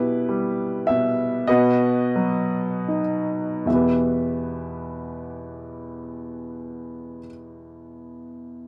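In a rubato 6/8 that moves at roughly 23-36 BPM in dotted quarters, this brief classical fragment for solo upright piano slows through its first 3.7 seconds before settling into a second phrase, tracing Em/B to B and back to Em at 3.7 seconds. The reflective, dark E minor writing, tuned to A4 = 441 Hz, spans E2 to E5 on a bright, woody instrument with long sustain and audible action noise. The piano sits up front and intimate within light reverb and an otherwise dark, warm production.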